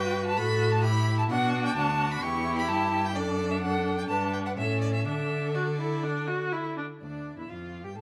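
Lively and cheerful, this quick classical-period movement for string quartet in D major moves at 126 BPM in 4/4, with beats that fall a little unevenly, and it is cut from a longer piece. All four bowed parts play throughout the 8 seconds. The first violin carries the melody high above with a smooth, even line and vibrato, while the second violin spins a lower second line and the viola fills in accompaniment, both expressive and colored by vibrato and portamento. The cello holds the bass with a clear, focused tone, sitting close and up front while the upper three strings sound rich and a touch distant. The harmony travels from A through Bm, Em, D/F#, G and A to settle on D, then turns to Dm at 7.0 seconds. Close, detailed microphones capture the players inside a moderate recital hall reverb that lingers about 1.5 seconds.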